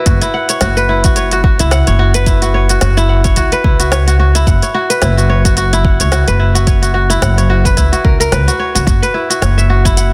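A swung sixteenth-note groove at 109 BPM in 4/4 drives this short cut from a longer organic downtempo piece, hypnotic and meditative in mood and resting on a single F#sus4 chord throughout its roughly ten seconds. An overdriven, layered electronic kick sits deep at the bottom, dressed in studio reverb, while a produced kit of smooth hi-hats, shaker and a snare with soft clipping adds lighter detail further back. A pizzicato upright bass on steel strings, woody and growly, holds the low end between F#1 and C#2, its level pumping with sidechain compression. Up front, a fingerpicked kora plays ringing, crisp arpeggios from E4 to F#5 through a tape echo. The small room ambience is light, and the master is dense and heavily limited in a modern style.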